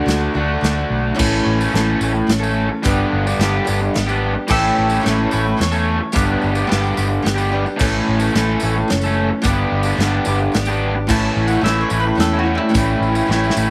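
A picked steel-string acoustic guitar and a bright, overdriven, double-tracked garage guitar riff open this nostalgic, jangly folk and heartland rock excerpt at 109 BPM in a straight 3/4 in A mixolydian, joined at once by a dark, foam-muted fingered bass and an airy, polished country drum kit with a punchy kick, while a close, jingly tambourine sits in the background from 1.2 seconds, a round, double-strung mandolin adds a second line at 4.5 seconds and again at 11.1 seconds over the A and G changes, and a drum fill at 13.3 seconds closes the passage in a light reverb.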